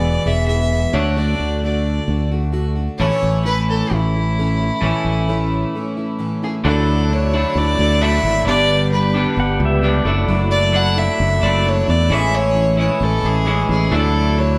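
A rich, earthy fiddle carries the melody from the start, biting and bowed by one player with light vibrato, set up front yet with a distant quality, over a straight 132 BPM rock groove in 4/4 that feels warm and nostalgic. Beneath it, a clean, compressed twelve-string electric guitar plays a riff, a picked plugged-in steel-string acoustic guitar plays accompaniment in the background with audible finger squeak, and a round, punchy fingered electric bass sits dark and direct at the front of the mix. After a break at 5.7 seconds, the second section opens on a Dadd9 chord, moving through G, Dadd9/F# and Amaj7, as a smooth tonewheel organ enters very quietly with sustained chords through a slow rotary speaker, joined by a reedy electric piano heard through its built-in speakers. A bright, twangy pedal steel guitar adds a brief fingerpicked second line with volume swells and slide at 9.4 seconds. 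The band sounds like it is playing live in one stone room with a noticeable reverb, and this clip is cut from a longer piece.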